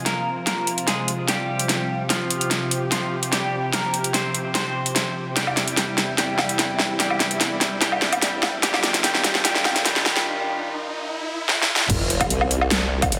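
A detuned, nasal unison pad pumps beneath a clean, bright hollow-body electric guitar melody with digital delay and an up-front dubstep kit of huge snare, metallic hats, crash and woodblock in this chaotic, heavy half-time wobble dubstep build at 147 BPM, moving through F5, C/E and Ebadd9 as a background riser arrives at 8.4 seconds before the drop at 11.9 seconds brings in a punchy electronic kick, an impact and an overdriven, formant-swept sawtooth wobble bass, all inside a wet, lush hall reverb and a dense, heavily limited master.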